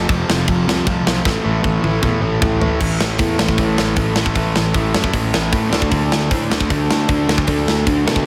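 A big arena sound, wrapped in a lush hall reverb, frames this rowdy, upbeat punk rock excerpt cut from a longer piece. An overdriven semi-hollow guitar, double-tracked and up front with a slapback echo, drives the riff from the opening moment through the chords F5, A5 and D5. Underneath, a modern picked electric bass, growly and punchy with a direct tone, holds down the low end. A tight metal drum kit enters at 0.1 seconds, its bright cymbals, medium-tuned snare and tight kick sitting forward in a big room, with crash, hi-hat and toms in the mix. A drum fill from 1.3 to 2.8 seconds carries the short opening passage into the next section, which runs to the end with a straight feel.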